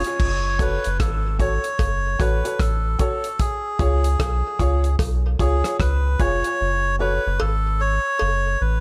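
Dub reggae with a meditative, heavy mood and a swung sixteenth-note feel, moving from F#m to C# and back in this short excerpt cut from a longer piece. An up-front, reedy and nasal melodica carries the melody through tape echo, while a dark, woody upright piano with audible action noise and a slightly detuned, boxy tone adds echoed stabs until 7.2 s. A deep, round sub bass sits under a dry, damped 70s drum kit of tight kick, hi-hat, rim click and dark crash cymbal that drops out at 6.6 s, and a quieter echoed cowbell enters at 1.0 s, all set in light studio reverb.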